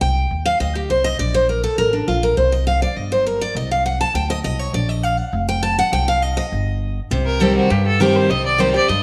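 A straight, driving four-beat pulse carries this lonesome bluegrass piece, cut from a longer performance. A bright, full-bodied picked steel-string acoustic guitar sits up front and takes a solo from the start until 7.1 seconds, moving over a minor chord, a major-seventh chord and bare power chords. Beneath it, a woody, thumpy upright bass with gut strings plucks a dark low line throughout. The second section begins at 7.1 seconds, and at 7.3 seconds a single bowed fiddle enters up front with the melody, its clear, earthy tone carrying a light vibrato, a smooth top and a touch of tape echo. The recording has the air of a small room, with moderate echo-chamber reverb lending a gentle sense of space.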